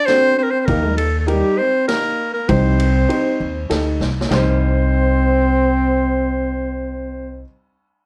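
A straight 3/4 lilt at 99 BPM drives this bittersweet, festive klezmer piece in C minor, cut from a longer work, where a clear, punchy classical-style clarinet carries the melody up front over a dark, close-miked trombone with jazz vibrato on the second line. A woody, slightly detuned upright piano fills in the accompaniment, and a growly pizzicato upright bass with steel strings enters at 0.7 seconds, sitting prominently beneath. A street-band drum kit with boomy kick, dark cymbals and a rolled-off top plays a fill at 4.0 seconds and drops out at 4.5 seconds, leaving the rest to ring in light reverb within a dark, warm production.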